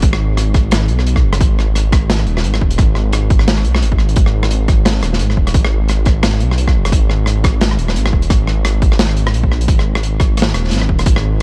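Dry and dark, this short cut from a longer half-time drum and bass track has a warm production with little reverb around it. At 174 BPM in 4/4 and G# minor, tuned to A4 = 445 Hz, it moves with a half-time feel and a 57% swing on the sixteenths, giving it a tense, cinematic mood. A detuned sawtooth bass sits up front, deep and rumbling between D#1 and B1, its unison voices beating against each other with a fast attack and long sustain. A crunchy breakbeat kit of hi-hat, rim click and medium-tuned snare has a gritty, saturated, mid-forward character and a rolled-off top. Under it, a hard-clipped electronic kick pushes through with overdrive, and all three parts play together from the start until about 11 seconds.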